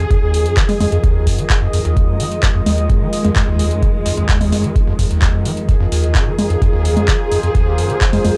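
A dry, gritty hardware sound with a cassette-tape grain frames this 8-second excerpt of driving, raw acid house at 129 BPM in 4/4, set in F phrygian, tuned to A4 = 441 Hz, and resting on a single Fm7 chord. An overdriven electronic kick, deep and analog and re-recorded in a small room, sits at the front. Alongside it from 0.1 seconds comes a booming analog drum machine playing congas, handclaps and metallic hi-hats, also overdriven. A squelchy square-wave acid bass carries the riff between Eb2 and F3, resonant and saturated, with a filter sweep, a fast attack, decaying notes and a lush chorus. A dark studio string section holds bowed ensemble chords from F2 to Ab4 with vibrato and a smooth top, pumping against the kick. A moody, mellow pad of detuned sawtooth and sine layers with a sub octave fades in slowly from 0.3 seconds, evolving low in the mix between F4 and Eb5 with chorus, its own reverb and the same sidechain pumping.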